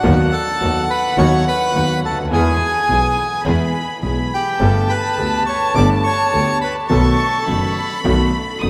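Tango at 105 BPM in 4/4 with a rubato feel, passionate and elegant, this short excerpt is cut from a longer piece and set in a vast, echoing cathedral space. A reedy, close-miked bandoneon carries the melody until 8.0 s alongside a sul tasto chamber violin section on a soft-attacked second line, while an intimate grand piano with audible action noise and deep bass provides accompaniment over an earthy, bowed double bass. A very quiet, lush symphonic string section adds dark stabs as the chords move from B/D# through E and Gadd9 to B7.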